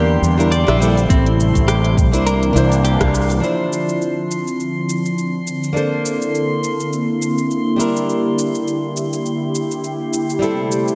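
A lush, detuned sawtooth pad sits up front with chorus and phaser, holding sustained chords under a bright, fingerpicked flamenco guitar whose finger squeaks ring through analog delay, while a glassy, drifting-overtone texture hovers high above in this wistful, relaxed sunset chillout excerpt in D minor at 103 BPM with a swung 16th feel. Early on, a clean, compressed electric guitar plays arpeggios through spring reverb and delay, a fretless bass with tube saturation holds the low end, and a deep, layered electronic kick joins at 1.1 seconds. The guitar and kick drop out around the band accent at 3.0 seconds, and the bass follows at 3.4 seconds. A smooth R&B kit of tape-toned hi-hat, rim click and shaker carries on to the end beneath a dreamy, reverb-soaked hall sound, as chords move from Em7b5 through Dm9 and C13.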